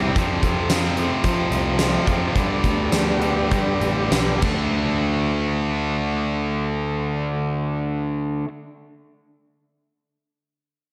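The tight distorted guitar plays a bright, picked riff up front from the start until 8.5 s in this brooding, gritty classic rock piece cut from a longer performance. Beneath it, a fuzz picked electric bass adds a round, punchy, overdriven low end running to 8.4 s, while a tonewheel organ holds full, thick sustained chords through a slow rotary speaker, lightly overdriven and tucked in the background until 4.4 s. A huge arena drum kit with a fat snare, punchy kick, crash cymbal, hi-hat and tambourine enters at 0.2 s and plays to 4.6 s. In 4/4 with a straight feel in D dorian, the tempo sits between 95 and 111 BPM and slows down across the opening section, as the harmony moves from F to G and lands on a D5 chord. A moderate, lush hall reverb and studio ambience give the whole a big arena sound, with the second section carrying on after the drums and organ fall away.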